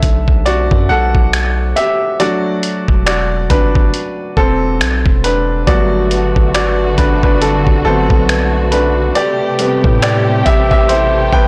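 Contemporary R&B at a slow 69 BPM with a swung sixteenth-note feel in A dorian, this sensual, moody excerpt features an intimate, up-front baby grand piano carrying a solo over a gritty, compressed sampler-style kit of finger snaps, hi-hat and thumpy kick with a soft-clipped snare, and a deep, decaying 808-style sine bass, before a lush, woody bowed string section and a thumb-plucked nylon-string guitar with digital delay, sitting in the background, join at 5.7 seconds, all within a blown-out, overdriven recording as the chords move from Bm7 through E9sus4 and Gmaj9 to Am9.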